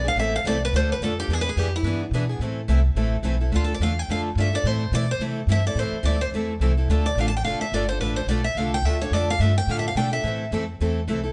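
A bright, up-front steel-string guitar opens with a bittersweet, virtuosic solo line, joined from the first moment by a second picked guitar with fresh strings and audible finger squeak, and by a dark, woody pizzicato upright bass placed up front. A boxy parlour guitar enters at 0.2 seconds in the background, filling out this fast, swung gypsy-jazz passage over minor-key changes. The band plays live together in a large studio with moderate reverb, and the clip is cut from a longer performance, the lead guitar stopping at 10.5 seconds.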